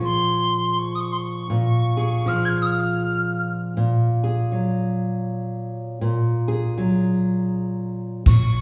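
Intimate and reflective, this short acoustic folk excerpt drifts at 80 BPM in a lightly swung 3/4, as a bright fingerpicked steel-string guitar moves from Bbm7 to Gbadd9/Bb beneath a pure, vibrato-laden tin whistle that sings until 3.5 seconds and returns at 8.3 seconds, just as a woody pizzicato upright bass and a soft brush kit with a punchy kick and ride cymbal enter, all bathed in the wet reverb of a recital hall.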